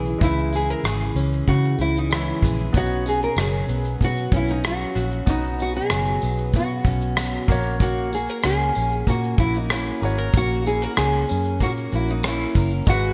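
A small-bodied nylon-string guitar carries the melody up front, fingerpicked and warm, its tone dressed in lush chorus and digital delay. This carefree, heartfelt piece of acoustic pop moves at 95 BPM in a straight 4/4, passing through C#m, Badd9 and F#. Beneath the melody, a fingerpicked jumbo steel-string acoustic guitar adds a full-bodied bed with subtle chorus, while a polished concert grand piano sits in the background with clear tone and a deep low end. A vintage electric bass, fingered and foam-muted, sounds dark, round and amped near the front of the mix. The acoustic drum kit enters at 0.1 seconds with a punchy kick, bundle-stick rim clicks and shaker under gated reverb, and a jingly tambourine joins quietly behind at 0.2 seconds. Light small-room ambience gives the short clip a bright 1980s-style digital sheen.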